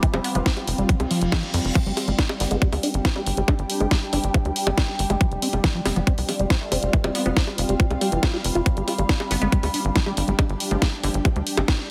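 A hypnotic, alien psychedelic trance cut at 139 BPM opens with a tight, tape-warm electronic kick and a garage kit of cracking snare, hi-hat, bongos and crash cymbal up front, under an overtone-sweeping drone with chorus and reverb and a mellow, ethereal pad, both pumping against the kick. A punchy, nasal sequencer bass drives beneath a squelchy liquid acid bass riff with phaser and tape echo, while a juicy, bright blip pluck with a resonant filter adds a second line from 0.2 seconds. A reverse cymbal rises from 1.1 to 1.8 seconds as the harmony moves between F and G chords, and the whole mix has a heavily compressed, radio-like sheen with light reverb.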